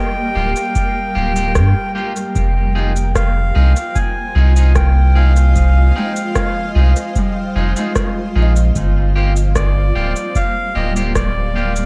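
Deep and spacious, this 75 BPM ambient dub fragment in F dorian sets a reedy, breathy melodica melody with dub echo over a cloudy, evolving granular pad, a buzzing, woody kalimba arpeggio that stops at 8.9 s, twangy, slightly broken-up electric guitar stabs, a round, up-front sub bass, an analog, tape-toned kick drum, and an echoing electronic cabasa and rim click, all moving between Gm7 and Fm7 beneath a layer of vinyl crackle.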